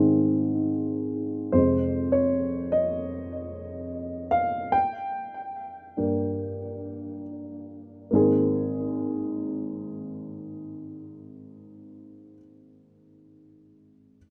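This rough home demo has a moderate studio ambience, with a short room tail around an up-front upright piano. It is a brief pop excerpt in Ab major and 4/4, with a straight, unhurried feel at roughly 68 to 76 BPM and a hopeful, heartfelt mood. The dark, woody piano carries everything, reaching from deep Ab1 up to Ab5, and a touch of digital delay trails its notes. After opening on Ab, the harmony moves to Fm at 1.5 seconds and on to Gm, and the tempo eases and slows through this stretch. At 8.1 seconds the harmony arrives on a mellow Abadd9, and the piano continues until the clip ends at 14.2 seconds.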